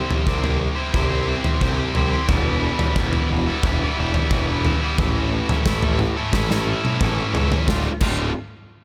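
A straight 4/4 pulse at 89 BPM drives this dark, cathartic alternative rock excerpt, where a bright, double-tracked distorted guitar riff and a growly, overdriven fuzz bass sit over an up-front acoustic drum kit with a punchy kick in a big room with bright cymbals, as chords move from C through Em and A before a drum fill from 6.3 to 7.7 seconds tips into Dm.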